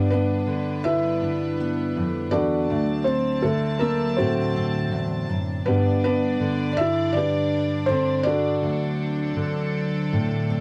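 A felt-muted upright piano carries the melody from the first moment, soft and intimate with its action noise audible up front, alongside a full-bodied fingerpicked steel-string guitar and a reedy, gut-toned string section holding sustained chords. In the background, a bright, ringing Celtic harp plays arpeggios until 5.5 seconds. This reflective, heartbroken folk-pop ballad excerpt settles into a moderate studio reverb as it moves between G and D7.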